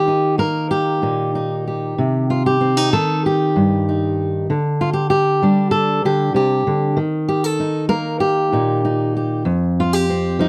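This is a dry, close recording with a 1970s studio character and a light touch of reverb, the guitar sitting up front in the sound. A single fingerpicked steel-string acoustic guitar plays solo for the whole 10.5 seconds of this fragment, which is cut from a longer piece. The instrument has a dark, auditorium-bodied tone, ranging from F2 up to Bb4. The folk harmony moves through Eb, Cm, G5/D, back to Eb, and ends on F5 at 9.5 seconds. With a straight feel in four, the mood is pastoral and peaceful.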